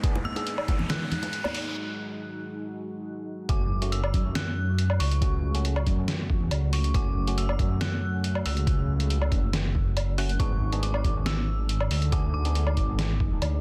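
A deep, rumbling detuned saw bass anchors this brooding, cavernous deep dubstep piece in F# minor at 139 BPM with a half-time feel, arriving at the drop at 3.5 s after a short build-up. Before the drop, an electronic riser, brief bright hand-struck bongos and congas, and filter sweeps on an eerie, warbling FM synth bell and a hollow, nasal organ stab lead into a break at 1.8 s. From the drop, a thumpy, muffled, overdriven kick and a pitched-down trip hop sampler-style kit of hi-hat, snare and woodblock drive the track, while the dub-echoed bell and stab and a moody ambient pad drift over a dense, heavily limited mix.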